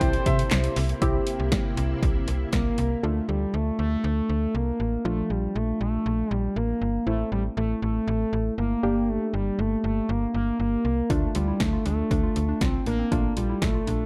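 A smooth, full-bodied synth lead with vibrato and tape echo carries the melody over snappy, metallic FM bass, mellow chorused analog keys and a silky string machine heard only until 3.0 seconds; a punchy analog drum machine with handclaps drops out and returns at 11.1 seconds alongside a warbling, lo-fi pluck arpeggio, all in a digital ambience that gives this nocturnal, melancholic synth-pop passage its dusky sheen.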